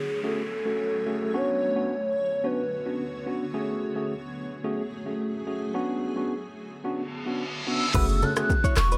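Afrobeats in F# minor at 109 BPM, this hypnotic, mellow excerpt from a longer piece opens on a granular cloud pad whose blurred, evolving chords carry built-in reverb through the full 9.0 seconds, moving between F#madd9 and Bmadd9. A hollow, woody synth lead with chorus and vibrato sings the melody at the start and returns near the end, while a clean tine electric piano sits up front as accompaniment from 0.2 seconds. Electronic downlifter and reverse cymbal effects sweep through the opening and again just before the groove arrives. At 7.9 seconds the afro-pop drum kit lands with a deep kick, warm hats, handclaps, rim click, shaker and crash, joined by a boomy, sine-like 808-style bass. A bright, picked electric guitar riff recorded direct with lush chorus enters at 8.0 seconds, alongside close, dry congas and bongos ringing softly in the background, all within a light reverb.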